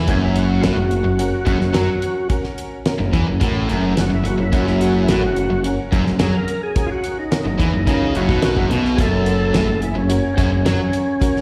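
Classic rock with a sunny, confident strut, this short cut from a longer piece sits on a straight four-beat groove and stays on one chord. An overdriven tonewheel organ takes a solo from 0.1 to 11.4 seconds, sounding thick and gritty through chorus vibrato, a slow rotary speaker, plate reverb and slapback echo. Beneath it, a crunchy overdriven guitar in the background and a tight, bright distorted guitar each play a low riff with slapback echo, both stopping at 10.8 seconds. A growling picked electric bass, round and punchy with overdrive, sits up front beside a damped 70s drum kit with a fat snare, tight kick and hi-hat. A jangly, metallic tack piano adds vintage accompaniment in the background, and the whole performance comes across like a live gig through a venue's PA with the light reverb of a recital hall.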